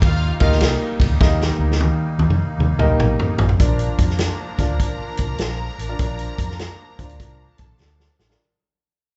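Up-front vintage drums with a punchy kick and dark cymbals drive this danceable, warm 1960s-style soul excerpt, whose drum fills at 1.2 s and 7.8 s frame a round, foam-muted electric bass, a woody upright piano entering at 0.4 s, a reedy, shimmering musette accordion holding sustained chords and a lush, bowed violin section on a second line, all in a live room with moderate reverb as the band fades out from 3.6 s.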